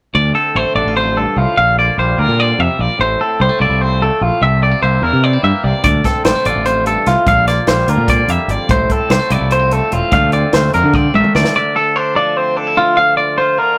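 A rough rehearsal-room recording with light reverb captures this restless, intricate passage of math rock and midwest emo in D minor, moving at 295 BPM in eighths through a straight 7/8, over chords that cycle through Dm7, Bb6, Fmaj7/A and C7. Two twangy electric guitars play throughout: one is clean, compressed and up front, picking out the chordal accompaniment, while the other picks bright arpeggios up high through analog delay, and a growling, overdriven fingered bass sits forward beneath them. A compact cocktail drum kit, dry with a high-tuned snare and punchy kick, enters at 5.8 seconds and ends with a fill, and once the bass drops out at 11.4 seconds the guitars carry the closing bars over F6/D alone.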